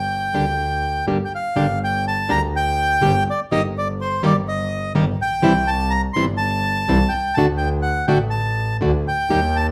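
A reedy, dark bandoneon sings the melody over a single bowed double bass with a biting, earthy tone and light vibrato, opening a tense, dramatic tango fragment in G minor at 124 BPM, played rubato in 4/4. An acoustic flamenco guitar joins at 0.3 seconds with fingerpicked accompaniment as the harmony moves from G minor through E-flat over G and C to D, all three instruments sitting up front. A moderate large-studio reverb lends the trio a sense of space.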